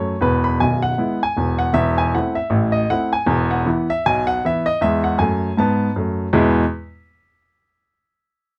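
Swinging and exuberant, this short stride piano passage from a longer jazz piece moves at 157 BPM in E major with a lilting swung feel. A solo baby grand piano, natural in tone with short sustain and placed up front, plays from 0.0 to 6.6 seconds across a range from the deep bass up to B5, shifting between E and A minor over E before a new section begins at 6.3 seconds. Close, detailed microphones and light reverb give the instrument an intimate, present sound.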